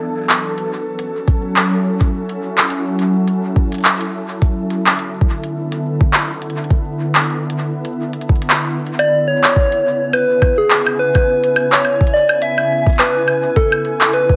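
A moderate plate reverb and digital ambience surround this eerie IDM excerpt, set at 105 BPM in 4/4 with a 56% swing on the sixteenths, in F# minor and tuned to A4 = 444 Hz. A glassy, ethereal FM pad holds slow-attack chords from the start, thickened by ensemble chorus and its own reverb as it moves from F#m7 through E7sus4 and C#m7 to Amaj7. An up-front organic electronic kit of handclaps, crisp hi-hats and woodblock enters at 0.3 seconds, treated with overdrive and digital delay, and a soft, overdriven electronic kick joins at 1.3 seconds. At 9.0 seconds a round, bright struck synth lead with a keys-like, decaying tone takes the melody between G#4 and E5, colored by chorus, vibrato and digital delay. The result feels intricate, with the mellow pad hovering behind the forward percussion and lead.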